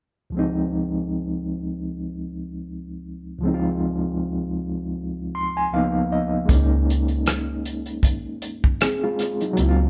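Lightly swung sixteenths carry this sensual, relaxed neo-soul R&B groove, where a gritty, barky reed electric piano, overdriven through a combo amp with fast tremolo, plays lush extended chords alone and adds a fill at 5.0 seconds before a dark, round, foam-muted fingered electric bass and a dry, rolled-off soul drum kit with tight kick, hi-hat and rim click enter at 6.5 seconds, all up front in a moderately reverberant large studio room.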